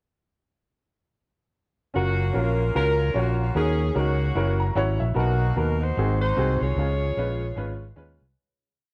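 Uplifting and hopeful, this short uptempo gospel piece swings in 4/4 as a woody upright piano with audible action noise plays close-voiced quarter-note chords and a brief fill at 4.4 seconds, a light-vibrato saxophone section carries a motif-based call-phrase melody up front, and a dark, punchy fingered electric bass walks and runs with chromatic approach notes, all through a concert hall reverb and worn, warbling cassette tape before the fade-out from 6.8 seconds.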